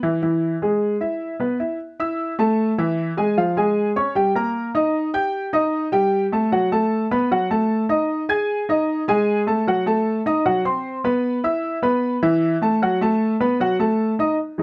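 Sunny and sophisticated, this short jazz excerpt from a longer piece features a clear, woody upright piano playing solo at a brisk 152 BPM in a straight 4/4, its slightly detuned, up-front tone ringing with long sustain through a moderate club reverb and a dark production as it moves in E major through a shifting run of colorful chords from E to F#m6.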